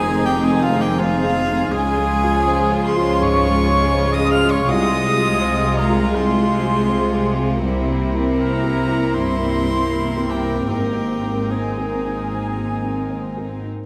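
The rhythm breathes freely in a slow, rubato four, with uneven beats that let this moving, uplifting cinematic cue pull and stretch like a held breath. A solo violin carries the melody high above, its tone soft-attacked, airy and floating, played sul tasto close to the listener, while two background violin sections double the tune and add a second line beneath it. A distant, mellow oboe with vibrato sings its own second line, joined from 0.2 seconds by a small flute group that sounds pure and gently tongued. Underneath, a dark, intimate baby grand piano accompanies with audible action noise, a woody, lush viola section thickens the middle, and a French horn section holds soft, lightly vibrating chords. Rich cellos and distant double basses anchor the bass with a soft, floating glow, and the whole passage, cut from a longer piece, moves from Fm7 through Dbmaj7 and C7 to settle on Abadd9, bathed in a wet recital-hall reverb.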